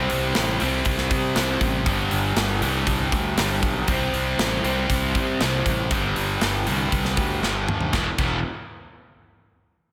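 A straight 4/4 pulse at 119 BPM drives this menacing hard rock excerpt in E minor. An up-front overdriven electric guitar with spring reverb and a sludgy distorted guitar with slapback echo, sitting in the background, play the riff over C5, G and G5 chords. A growly, punchy fuzz fingered electric bass underpins them, and a tight metal drum kit with bright cymbals and an airy, polished big-room sound lands a fill at 7.4 seconds before the harmony moves to E5 at 7.9 seconds, within a lush hall reverb that gives a big arena sound.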